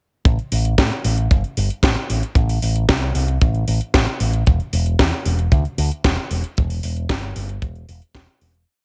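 This is a short, complete italo disco piece in A minor at 114 BPM in a straight 4/4, carrying a bittersweet, nostalgic mood. A dry, tight acoustic kick sits up front with a four-on-the-floor pulse, running from 0.3 to 8.3 seconds. Alongside it, a layered electronic house kit plays a disco machine beat with closed and open metallic hats and a cracking snare, its tape-warm tone re-recorded in a small room and treated with gated reverb. A picked electric bass through an envelope filter drives eighth notes between E1 and A2, sounding dark, round and punchy from an amp. The whole track is a single verse with little room reverb overall, and it fades out from 5.9 seconds to its close at 8.7 seconds.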